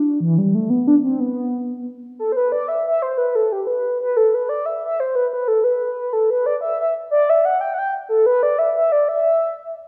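Dark and lively with a driving pulse, this short Celtic folk excerpt in a straight 6/8 features a lone mellow, horn-like synth lead, round and sawtooth-edged with a soft attack, sustained notes, vibrato, chorus and tremolo, sitting up front and ranging from E3 to G5 within a wet recital-hall reverb until 9.8 seconds.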